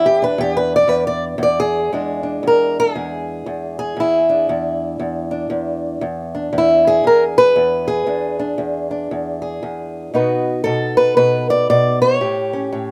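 A fingerpicked old ladder-braced acoustic guitar carries this short, gritty and soulful piece of acoustic country blues, cut from a longer performance. It sits up front in the mix with a dark, woody, boxy tone and the dull bite of old strings, and a slapback echo trails each note. The guitar covers a span from E2 up to D5 over a swung 4/4 feel. It opens alone on an E5 chord, moves to E7 at 1.9 seconds, then shifts through B7 and A7 before the clip ends at 12.9 seconds. Recorded outdoors, the sound is dry and close, with little reverb or room ambience around the strings.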